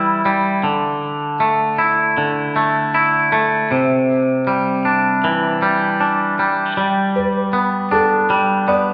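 Euphoric and soaring, this short post-rock passage moves at an unhurried 78 BPM in straight 4/4, centered on G major and cut from a longer piece. A twangy, clean electric guitar sits up front, playing fingered, compressed arpeggios from 0.0 s, with tape echo trailing its notes. At 7.2 s a felt-muted upright piano enters with soft, mellow arpeggios in a higher register, its tone intimate and natural. The harmony moves from Em through Dsus2 and Cadd9 before landing on Gadd9. The band plays live together in one room, bathed in a wet large-studio reverb, and the sound is rounded off with the top end rolled away above 7.5 kHz.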